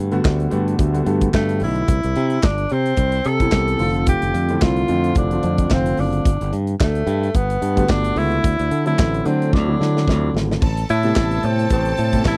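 Disco with a glamorous, celebratory mood and a lightly swung sixteenth-note feel, built on a growly, bright fingered electric bass, a punchy studio drum kit with handclaps, hi-hat, snare, kick and crash cymbal, and a deep-bassed grand piano playing the chords. A clear tenor saxophone with light vibrato carries the melody from 1.3 seconds, roomy yet up front, and after a drum fill a lush, biting bowed string section enters at 10.6 seconds as the harmony moves to Am9. The sound is dry and close, in a 1970s studio style.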